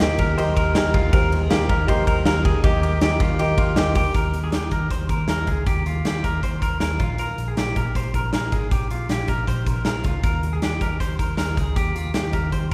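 This excerpt sounds as if it was captured in a church or concert hall, with a long, wet reverb around the band and a layer of vinyl crackle over it all. It is jangly indie pop at 158 BPM in straight 4/4, nostalgic and bright, moving from Eb major into Eb mixolydian at 4.1 s, with chords shifting from Eb to Bb5 and back to Eb. A dark upright piano opens the accompaniment, mellow and woody, slightly detuned, with its action noise audible, and it drops out at 4.2 s. A clean, twangy electric guitar plays compressed fingered arpeggios throughout, while a vintage foam-muted picked bass gives a round, amped low end. Up front, a big rock drum kit drives the track with a punchy kick, a medium-tuned snare, and bright hi-hat and ride cymbals ringing in a big room.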